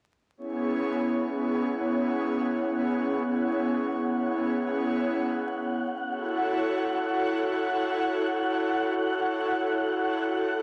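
Set in a straight 4/4 drum and bass frame, this dark, raw fragment of a longer piece rests on a breathy, detuned pad that enters at 0.4 s with chorused sustained chords, moving from C#m7 to F#m7 at 6.1 s. A faint, wind-like sine texture joins at 1.3 s, holding a single high note behind the upfront pad. The whole passage sits in a wet echo chamber and is squeezed into a heavily compressed radio sound, with added vinyl crackle.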